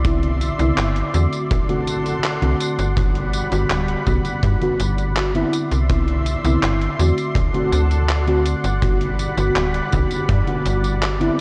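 A cassette-tape haze hangs over this short studio-ambience excerpt of dreamy, faded vaporwave in a straight 4/4. A mellow FM electric piano sits up front with a soft, round, warbling tone, its dark vintage character thickened by ensemble chorus and tape echo as it plays accompaniment over a loop of Cmaj9, D7 and Gmaj7. Alongside it, a lush unison pad holds sustained chords, its detuned sawtooth and square-wave layers blooming slowly into a bright, chorused wash. A slap-like FM bass gives a snappy, metallic attack that decays, pushed forward and gritted up with tube saturation. The rhythm comes from a detuned 8-bit digital drum machine playing handclaps, hi-hat and tambourine with a sampler-style, tape-warm feel in small room ambience and gated reverb. A punchy, saturated acoustic kick drum in a bright stone room pumps along with them and drops out at 10.4 seconds, just before the piece is cut off.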